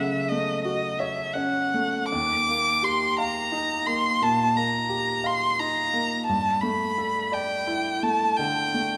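A single bowed violin leads this dreamy, pastoral fragment of impressionist chamber music, singing its melody up front in a warm, expressive voice rich with vibrato and portamento, set high between D#5 and D6. Beneath it, a grand piano supplies the accompaniment with a clear, intimate, natural tone, reaching from deep bass notes up into the treble, its action noise audible close at hand. The duo moves in a gently swaying 12/8 with a flexible rubato feel, both instruments sounding together from 0.0 to 9.0 seconds. The harmony drifts from F#m to D#add9 and then to G69, lending the passage a hazy, floating color. A reverberant recital hall surrounds the pair, and a vinyl crackle adds an old-record patina to this short excerpt cut from a longer piece.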